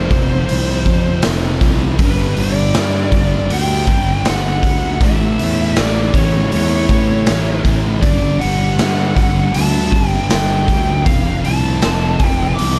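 Rock in a shoegaze and dream pop vein, this hazy, dreamy excerpt moves through F5, G5 and A chords in a straight 4/4. A thick, double-tracked fuzz guitar carries the low riff with analog chorus, while a growly, overdriven fingered bass pushes underneath, and a dark, bluesy lead guitar sings a high melody through distortion and digital delay. Up front, a raw garage drum kit of hi-hat, punchy kick and medium-tuned snare sounds saturated and gritty in a pumping stone room, all wrapped in a dusky, small-room production.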